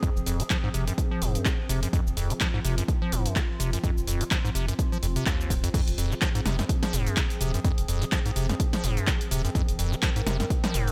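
A swung sixteenth-note groove in four drives this gritty, hypnotic acid house cut from a longer piece, anchored by a punchy, tape-warm electronic kick placed up front with a small-room character. A punchy analog drum machine fills in with cabasa, crash cymbal, handclaps, hi-hat and a punchy snare, with a short room on the snare, clap and hats. The squelchy, hollow square-wave acid bass riff sits forward with resonant, saturated bite and vintage 12-bit sampler grit, and a filter sweep runs across it through the first 5.7 seconds before the drop arrives. Beneath it, a round, deep analog bass enters at 0.2 seconds with a dark, sustained tone and sidechain pumping. A warbly, nostalgic pad holds lo-fi, detuned chords on F minor with chorus, its own reverb, slow attack and long release, also carrying sampler grit and sidechain pumping. The overall mix is dry and close.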